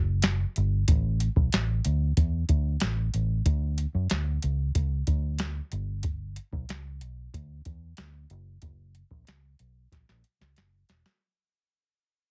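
Hazy and nostalgic, this short indie and bedroom pop cut moves at 93 BPM in a straight 4/4, pairing a dark, round, foam-muted fingered electric bass with a soft analog rhythm box of deep kick, crisp snare and metallic hats, both sitting up front in a dry, heavily compressed radio sound that fades out across its length, with a drum fill arriving at 9.9 seconds.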